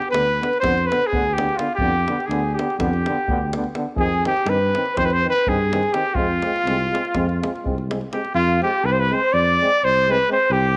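A mellow, jazz-inflected trumpet with light vibrato leads up front, shadowed by a distant, very quiet flugelhorn in a classical vein, while a tight, close and dry davul drives the restless 9/8 pulse of this fiery Balkan brass band fragment. A punchy, dark tuba anchors the bass, and a clear euphonium with a soft attack and a roomy trombone fill in the background through a small, echoing room. The davul drops out at 8.3 s as the tune moves into a new section over the last seconds, with the trumpet, flugelhorn and tuba carrying on until 10.8 s.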